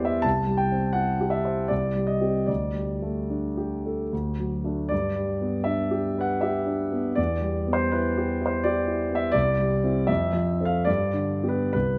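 Close, detailed microphones place a warm concert grand piano up front, its long sustain blooming into a moderate recital hall reverb. This is a romantic character piece for solo piano, cut from a longer work, with a hopeful, lyrical mood. It moves in a flowing triple metre with rubato, so the pulse gives and takes throughout. The piano spans from a deep bass to a clear upper register, and that low end gives the passage a rich foundation. The harmony turns from C to a brief C minor shading, then settles through D toward G by 4.9 seconds. It later passes through E minor and Fmaj7 before arriving back on G at 10.9 seconds.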